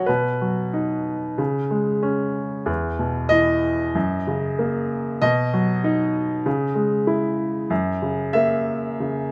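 A clear baby grand piano opens this brief, lyrical classical solo in B major, playing up front with an open tone and short sustain across a range from E2 to A#5. The mood is warm and relaxed at around 94 BPM in 4/4, with uneven, rubato timing as the harmony moves from B through C#5, E5, F#, B and C#m before settling on F# at 7.7 seconds. Close, detailed microphones and a light reverb frame this passage, which is cut from a longer piece and lasts 9.3 seconds.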